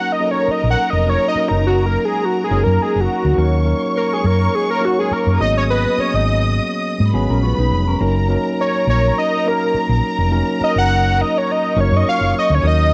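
Silky and cinematic, this soul excerpt swings gently in 4/4 as a fat, detuned sawtooth synth lead with a sub octave, filter sweep and vibrato carries the melody up front, over lush, bowed strings in a dark symphonic section and a clean tine electric piano through a combo amp. A round, amped hollow-body bass enters at 0.5 seconds, and a mellow electric guitar with phaser slips in from the background for a brief riff at 7.1 seconds. Chords move from Gb6 through Ebm7 and Abm11 back to Gb6 under light reverb.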